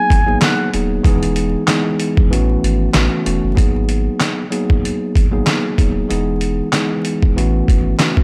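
Boom-bap hip-hop with a reflective, gritty mood and a swung feel, opening with a brief, veiled cup-muted trumpet phrase with vibrato and scooped notes that ends at 0.7 s, over a bell-like tine electric piano with cassette-tape color playing extended chords, a deep, round dub sub bass with transformer saturation, and an up-front, compressed, pitched-down sampler-style drum kit of thumpy kick, snare, hi-hat and handclaps whose kick drops out from 2.3 to 3.6 s, set in a dry mix with vinyl crackle.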